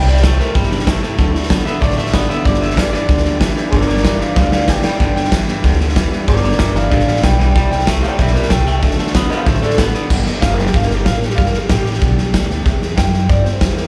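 A straight 4/4 beat at 188 BPM from a gritty garage drum kit, with a punchy kick up front in a pumping stone room and a drum fill at 4.4 seconds, drives this rollicking, rowdy rockabilly cut in G major. Woody pizzicato upright bass on gut strings underpins a clean, twangy electric guitar riff with slapback echo that drops out at 10.1 seconds, while a slightly broken-up electric guitar through a small old amp carries the picked melody with slapback and tape echo over a very quiet, full-bodied jumbo acoustic guitar. The whole thing sounds like a live gig heard through a club PA, with small room ambience, and it is cut from a longer piece.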